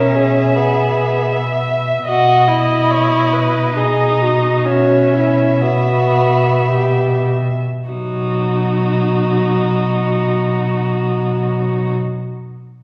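Classical string quartet movement in a serene, lyrical vein, heard as a rubato excerpt in triple metre that slows from 0.9 to 7.9 seconds, where four muted, dark, veiled strings blend: a distant first violin with vibrato carries the melody, an up-front second violin sings a lower line, the viola supplies light-vibrato accompaniment, and an up-front cello holds a single low bass note, all enveloped in the generous reverberation of a church or concert hall.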